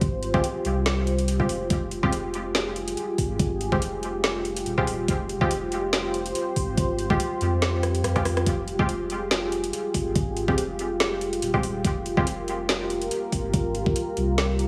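A half-time groove at 142 BPM with swung 16ths drives this dark, brooding deep dubstep in F minor, where an overdriven, knocking electronic kick and an up-front garage kit of woody snare, rim click and metallic hats sit over a round, soft dub sub bass and a moody, detuned analog pad holding an Fmadd9 chord, while muted, filter-plucked dub chord stabs with chorus and dub echo appear from 0.3 to 12.3 seconds and a drum fill breaks in at 7.8 seconds, in a lightly reverberant room.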